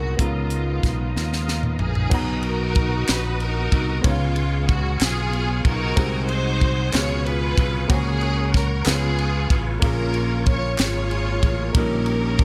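Hopeful and reverent, this slow gospel passage in 6/8 opens with a dark, clean electric guitar and a distant, nasal muted French horn section briefly joining lush bowed strings, woody long-sustaining upright piano, a clean tonewheel organ in the background with slow rotary speaker and chorus vibrato, a growly, punchy fingered electric bass up front, and a polished fusion drum kit with dark cymbals and a high-tuned snare whose fill at 1.2 seconds leads into a longer section where very quiet, close and dry group handclaps enter at 3.1 seconds over rich seventh-chord harmony.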